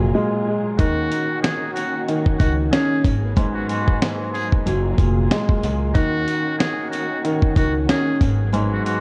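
A swung 93 BPM boom-bap groove in Eb minor drives this tough, dark hip-hop excerpt. A woody upright piano with audible action noise, cassette tape color and dub echo opens alongside a pizzicato upright bass and lush sul tasto strings in the background. At 0.8 seconds a gritty sampler-style kit with thumpy kick and fat snare joins, together with a buzzy metal-muted trumpet melody with vibrato and dub echo and faint jingly sleigh bells. Everything moves through Gbmaj9, Ebm7 and Abm9 chords before the kick drops out at 8.5 seconds.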